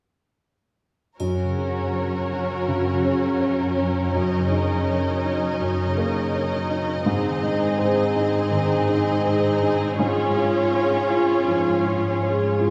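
A warm, vintage-toned grand piano accompanies this tender, uplifting cinematic film-score passage at a rubato 82 BPM in Gb lydian, with warm vibrato violins on a second line, rich up-front violas and a mellow, ringing harp weaving arpeggios over a focused, lush cello bass through Gb, Ebm7/Gb, Ab and Db/Ab, while a bright triangle touches in only from 1.2 to 2.6 seconds, all set back in a reverberant concert hall.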